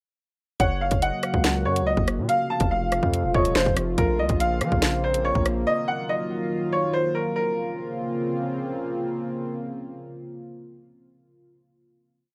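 This short, menacing drill piece opens at 0.6 seconds with everything arriving at once: a bright, woody upright piano carrying a looping melody that repeats like a sampled loop, set against a dark analog pad holding sustained chords with a moody ring-modulated, sub-octave depth. Underneath, a distorted 808-style bass delivers heavy, aggressive sub notes that follow the kick and bend with pitch slides, while the drill drum kit sits up front in a half-time feel, with a hard-clipped kick, a sharp snare layered with finger snaps, rim clicks, and skipping hi-hats. In the background, a velvety synth lead adds a sparse counter-melody with vibrato, chorus, and digital delay, dropping out by 3.5 seconds. The hook moves through Gb, F, Bbmadd9, and Ebmadd9. The drums and bass fall away before the final Bbmadd9 chord at 7.4 seconds, where the piano soon stops and the pad sustains on to the close. The sound is a rough home demo mix in a moderate studio reverb, giving the whole piece a dark, brooding edge.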